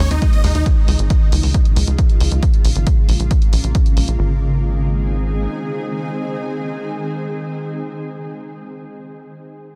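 A straight 4/4 pulse at 136 BPM drives this short, soaring, euphoric uplifting trance cut in Ab major, with a dry, punchy electronic kick sitting up front from 0.2 s to 3.8 s alongside a dry analog hi-hat. Underneath, a tight, nasal sequencer bass mixes sawtooth and square-wave tones with a filter pluck and fast attack, pumping with the sidechain. In the opening moment a huge, detuned supersaw lead flashes a bright, compressed melody with delay, while a round, very quiet analog pluck adds arpeggios with a noise layer and chorus. A shimmering, ethereal pad carries sustained chords through Ebsus4, Db, Bbm7 and Ab, its dark, granular sine tone gaining an octave-up shimmer, chorus and its own reverb, and it plays alone once the bass stops at 5.5 s. The whole is a dense, heavily limited modern master set in digital ambience, cut from a longer piece.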